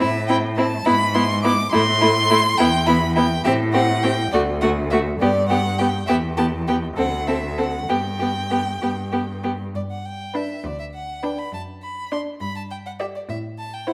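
A wet recital-hall reverb surrounds this lively, graceful classical-period string quartet movement in G major, heard as a cut from a longer piece, moving at 68 dotted-quarter beats per minute in a rubato 6/8, with an up-front, focused first violin singing the vibrato melody high above a distant second violin whose expressive line slides with portamento, a rich viola filling the accompaniment, and a close cello anchoring the bass, all four bowing from the very start to 13.9 seconds as the harmony travels from A minor toward G.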